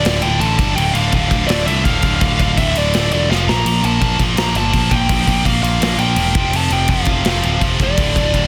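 Heavy metal in a straight 4/4 with a half-time feel, this short cut from a longer piece sounds epic and heavy. A dark, picked high-gain lead guitar carries the melody high above two bright, distorted rhythm guitars that play the riff in the background, sharing the same low register. A growling, overdriven electric bass, picked and punchy, anchors the bottom under the chords moving through D5, G5, Dm, F5 and Bb5. The acoustic drum kit sits up front with a punchy kick, medium-tuned snare and bright crash cymbals, and it drops in a brief fill at 3.3 seconds. The sound is dry and dense, with a heavily limited modern master.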